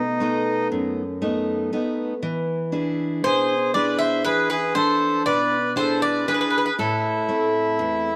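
Bathed in a moderate plate reverb, this short, melancholic fragment of Greek folk music for bouzouki band moves in a straight 9/8 at 119 eighth-note beats per minute, tuned slightly low to A4 = 438 Hz. Up front, the bouzouki carries the wistful melody with a bright, metallic ring from its doubled and partly octave-doubled strings, while a reedy, airy accordion shapes a second line beneath it. A fresh-stringed, picked steel-string acoustic guitar, its finger squeaks audible, supplies warm accompaniment through chords moving from B7 to E7 and settling on Am at 6.8 seconds.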